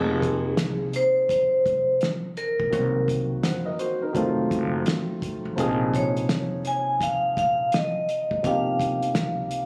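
Swung sixteenths in 4/4 give this smoky, nocturnal jazz-hop excerpt its lazy hip hop sway, with a cloth-damped drum kit entering at 0.2 seconds with a fat snare, tight kick and hi-hat, all dry and dusky. A vibraphone with medium hard mallets carries the ringing, airy melody with a medium motor vibrato, over a mellow, shadowy grand piano and a woody, thumpy pizzicato upright bass on gut strings. The chords move from Fm7 through Cm7b5, F7b9 and Bbm7 to Gm7b5, and the sound is that of a phone catching the band in a small club with light reverb.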